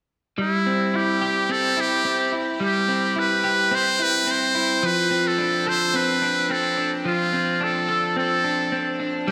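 Drenched in a lush hall reverb, this blissful, dreamy dream pop excerpt in C major at 108 BPM sets a buzzy, thin, close-miked muted trumpet with light vibrato on the solo melody, up front and trailed by shimmer reverb and delay, over picked, compressed arpeggios from a slightly broken-up electric guitar bathed in lush chorus, shimmer and delay, both playing from 0.4 s as the harmony moves from C to Dm7 at 4.8 s.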